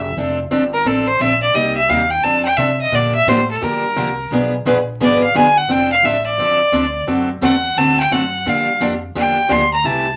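Set in a wet studio room with vinyl crackle, this cheerful, swinging western swing excerpt in F major moves at 174 BPM, led by a clear, biting bowed fiddle soloing up front with light vibrato throughout, while a bright, boxy picked parlour guitar with finger squeak accompanies over the chords and a woody pizzicato upright bass sits low beneath them.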